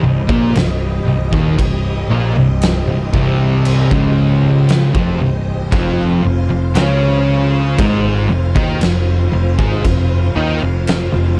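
A slow, straight 4/4 pulse at 58 BPM drives this heavy, brooding stoner and doom metal fragment in C minor, moving from Cm to F5 at 5.7 seconds under a dark, lightly reverberant production. A growly, punchy picked electric bass with overdrive and riffs from two thick, dark fuzz guitars and a bright, double-tracked overdriven semi-hollow guitar sitting in the background sound from the very start, joined at 0.3 seconds by an oversized, low-tuned acoustic kit with a boomy kick, fat snare, dark crash cymbal and a pumping big-room sound. Above them, a shimmering vintage string machine with soft-attack sawtooth violins and ensemble chorus holds sustained chords.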